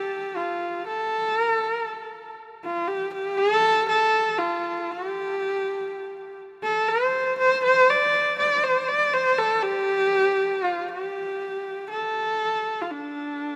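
A lone bowed horsehead fiddle opens this solemn, windswept fragment of traditional Mongolian music in free time, its husky, focused horsehair tone sitting up front with vibrato and portamento as it sings between D4 and D5 for 13.6 seconds inside a huge ambient reverb.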